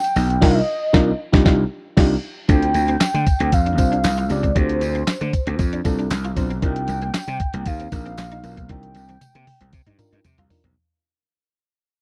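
A clean, thumpy 12-bit drum machine with handclaps, toms and crash sits up front in a straight, danceable early-eighties boogie funk groove, joined by a growly, overdriven slap bass, a jingly tambourine in the background and a band accent from 0.4 to 2.5 seconds. A mellow, horn-like synth lead with chorus and vibrato carries the melody over a warbling FM electric piano and a twangy, slightly broken-up guitar riff, moving from Cm11 to Dm7 and back. The slick passage fades out from 2.5 seconds, with a drum fill closing it from 8.7 seconds.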